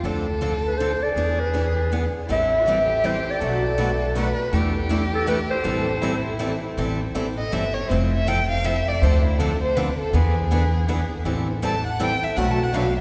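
A growling clarinet carries the melody from 0.7 to 6.4 seconds, its raspy, gritty tone marked by scooped notes and vibrato in a jazz style, in this bittersweet yet fiery cut from a longer piece of acoustic string swing in A minor. It moves at 161 BPM in 3/4 with a swung eighth-note feel, over minor-key changes that circle through chords such as Dm7, E7 and Am7. From 6.8 seconds the violin steps forward for a solo, its bowed line close and expressive, with soft attacks, portamento and vibrato, having played a second line under the clarinet before that. Two picked acoustic guitars supply accompaniment: a steel-string part that is bright with audible finger squeak, and a boxy swing-style part that joins shortly after the start. The upright bass sits up front, its pizzicato gut strings dark, woody and thumpy. A long cathedral reverb from a church or concert hall surrounds the ensemble.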